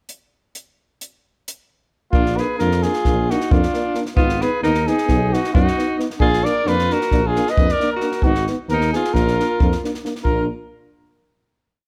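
With light reverb, this fiery, restless Balkan brass band piece runs at 266 BPM (eighths) in 9/8, in Bb phrygian dominant. A dry, compact cocktail drum kit with a high-tuned snare and punchy kick plays the pickup bar alone. At 2.1 seconds the band enters: a mellow cornet sits up front with a classical, motif-based melody in sentence phrases, while a bright alto saxophone with vibrato adds a forceful, jazz-style harmony line mostly in thirds. In the background, two euphoniums, one dark and one vintage-toned, pulse out the chords over a smooth-topped tuba playing root and fifth on the main beats, before the piece closes on a final chord at 10.2 seconds.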